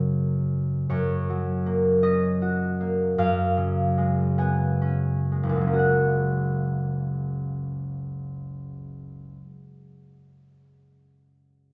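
This classical excerpt for solo concert harp is dreamy and graceful, flowing in a rubato 6/8 at roughly 40-54 BPM counted in dotted quarters, in F# major with tuning set at A4 = 438 Hz. The harp sits up front with a warm, ringing, fingerpicked tone, spanning from F#1 down low to G#5 above. It plays from the start and stops at 9.4 s, with the tempo slowing through the first 5.8 s. The harmony moves from F# to C#7/F# at 3.2 s and settles back on F# at 5.8 s, where a new section begins. The sound is bathed in a wet recital hall reverb of about 1.4 s, with a soft top end that gives the recording the feel of a church or concert hall.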